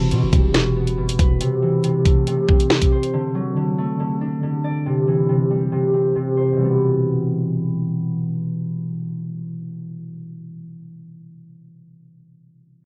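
A half-time drill groove in 4/4 opens this menacing, tense hip hop excerpt, with an electronic kit of knocking kick, sharp snare, metallic hi-hats and finger snaps sitting up front with a tape-softened edge from 0.1 seconds until it stops at 3.1 seconds. Beneath it, a punchy, heavy 808-style bass with a sine body, a noise layer and a fast attack hits low and decays, dropping out at 1.4 seconds. A thumb-plucked concert harp rings in the foreground from the start and carries the whole piece, its acoustic tone dulled by a low-pass filter that sweeps across the opening section and colored by cassette tape. The harmony moves through four chords, E minor, A minor, D and C, before the music shifts into a second section at 6.6 seconds. Light reverb surrounds the parts, giving the recording the homespun character of a cassette made at home.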